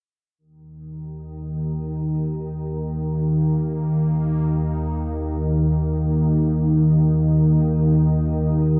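A sweeping, airy pad fades in at 0.4 seconds on an Eb5 chord, its detuned sawtooth tone carrying a noise layer, a filter swell and a bright chorus sheen as it sustains chords in the middle register. At 0.8 seconds an organ-like drone settles beneath it, sitting up front in the low register with a nasal, unison timbre of sine and triangle waves softened by a slow attack, ensemble chorus and its own built-in reverb. This is a dark ambient drone piece in free time, cut from a longer work, and its mood is cavernous and desolate. The pad stays quieter and shifting while the steady, calm drone dominates, and both parts hold with long releases until 8.8 seconds. A cathedral-like reverb with a 6.5-second decay surrounds the dark, warm production, stretching every tone into a vast, hollow space.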